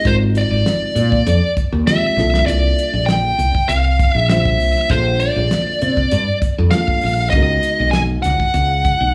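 A smooth, overdriven lead guitar carries the melody up front in this bright, slick electric jazz fusion excerpt, its dark, picked tone trailed by tape echo as it moves between C5 and Ab5. Beneath it, a woody fretless electric bass sits equally forward, round and hollow-bodied, with a lush chorus giving its low register a shimmering depth. A reedy electric piano supplies clean accompaniment through its built-in speakers, playing until 8.5 seconds. The damped 70s drum kit holds a straight 4/4 at 99 BPM with a fat snare, tight kick and a rolled-off top, and a short drum fill at 2.2 seconds marks the shift from Bb13sus4 to C13sus4. The harmony stays on suspended thirteenth chords, moving up to Db13sus4 at 7.3 seconds, all set in a light, small-room reverb.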